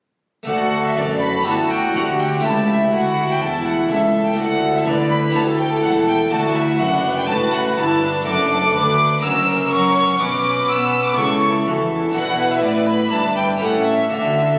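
A Flemish-style harpsichord with two sets of strings opens this brilliant, festive baroque-style concerto excerpt at 0.4 s, its airy, full plucked sound sitting in the background. At 0.5 s the alto recorder and strings join. A rich, smooth-topped violin section carries the melody up front, sharing it with the wooden-toned recorder, whose tongued chiff and vibrato lend expressive color from further back. A second violin section with light vibrato plays a close inner line, while a dark viola section fills in the accompaniment, both on period-style gut strings with a reedy bowed edge. Beneath them, a distant cello section and a double bass section supply the bass in the background as the harmony moves from D through F#7 to Bm, arriving on A7 at 13.6 s. The piece was captured on a phone in the room and is soaked in a long, wet reverb with a club-like ambience and a dulled top end.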